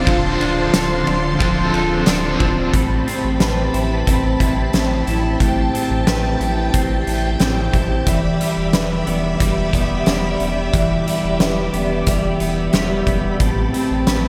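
A haunting, ethereal dream pop excerpt in A minor at 90 BPM opens on a bright, overdriven, double-tracked semi-hollow guitar with tremolo and chorus that drops out at 3.3 s, alongside a darkly broken-up electric guitar picking chorused, delayed arpeggios, a vintage organ-like ensemble pad holding sustained chords up front, and a thick, saturated sub bass, while an oversized, low-tuned drum kit with a boomy kick, fat snare, dark cymbals and tambourine pumps in a gritty big room, all moving from Dm7 through Am9 and Em7 inside a lush hall reverb and bright 1980s-style digital sheen.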